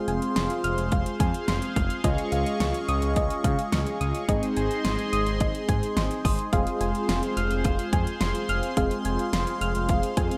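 A warm, detuned analog keyboard and a swirling, phased pad open this short synth-pop excerpt together at 0.0 seconds, with a soft, round pluck, a smooth gliding synth bass and a pop drum kit arriving at 0.1 seconds. The mood is nocturnal and cool, moving at 107 BPM in a straight 4/4 feel in F minor, with the chords cycling through Fm, Dbadd9 and Ab before returning to Fm. The electronic drums sit up front, with a punchy kick, fat snare and metallic hats given an overdriven edge and the character of a small room. Beneath them, the sawtooth-and-triangle bass is mellow and sustained, sliding between notes with portamento and vibrato, while the keys carry the accompaniment with a filter sweep and chorus. High above, the dark, full-bodied pluck plays arpeggios through chorus and digital delay, and the evolving pad holds sustained chords with a slow attack and a long release. The whole mix is set in light reverb and digital ambience.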